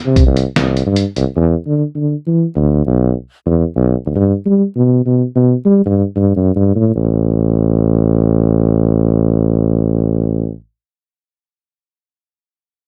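Brooding and intricate, this progressive instrumental excerpt moves at 150 BPM in an uneven 7/4 with a straight feel, tuned slightly sharp to A4 = 443 Hz. The tuba sounds first, and a sampler-style drum kit joins it up front at 0.2 seconds, its pitched-down, compressed hits giving a thumpy kick, a fat snare and hi-hat a muffled, small-room character, but it sounds only briefly before dropping out at 1.3 seconds. From there the tuba carries the music as a solo bass voice, ranging from A1 to G3 and playing through to 10.5 seconds. Close-miked and punchy, with a light vibrato and a pop-style delivery, it sits directly in front of the listener. The dark, warm production keeps reverb to a minimum, and a shift into a second section arrives at 7.0 seconds.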